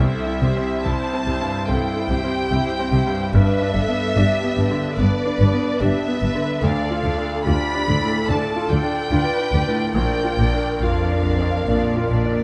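A bright concert grand piano with deep bass sits up front amid muted, con sordino symphonic strings, where two violin sections carry the melody and a second line, violas add accompaniment, and cellos and double basses hold the bass with a veiled, bowed tone, giving this moving, hopeful cinematic piece, in C major at a rubato 72 BPM, a lush sound that is closely recorded with light reverb.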